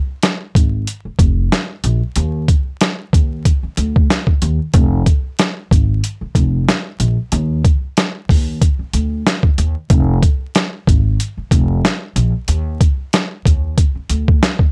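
A gritty, compressed sampler-style boom-bap drum kit with a thumpy kick, medium-tuned snare and hi-hat opens at 0.2 s, pitched down and tape-warm up front, before a dark, woody pizzicato upright bass joins at 0.6 s in the low register, giving this reflective, moody hip-hop excerpt in F dorian a swung 93 BPM groove over a dry sound dusted with vinyl crackle.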